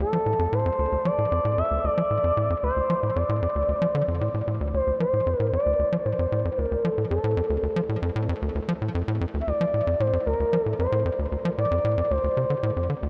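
Expansive and hypnotic, this ambient fragment in D minor moves at 114 BPM over a Dm7 chord, where a tight, punchy sequencer bass riff of sawtooth and square-wave filter plucks drives beneath a smooth, dark, resonant sawtooth lead that glides through its melody with portamento and vibrato, the lead colored by chorus and both parts by tape echo, all set in a huge, wet reverb with an 8.0-second decay.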